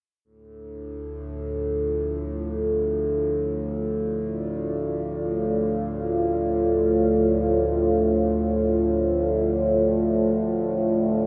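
Bathed in a cavernous cathedral reverb, this ominous dark ambient drone, taken from a longer piece, floats in free time with an unsettling stillness. An overtone-sweeping synth drone sits up front from 0.6 seconds, its nasal, resonant sawtooth tone swept by a filter so the overtones shift and glow under chorus. At 1.8 seconds a deep, moody pad joins with sustained chords, its detuned unison voices and sub octave giving a warbling, vintage darkness.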